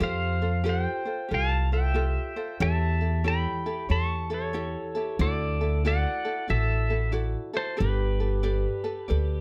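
A lazy swung eighth-note lilt carries this languid, relaxed Hawaiian excerpt: up front, a bright, twangy electric pedal steel guitar plays the melody cleanly with fingerpicks, slide and volume swells, over a light, fingerpicked acoustic ukulele and a woody, dark pizzicato upright bass on steel strings that also sits up front, in a light reverb as the chords drift from Fadd9 through A7/E and Dadd9 to Gadd9.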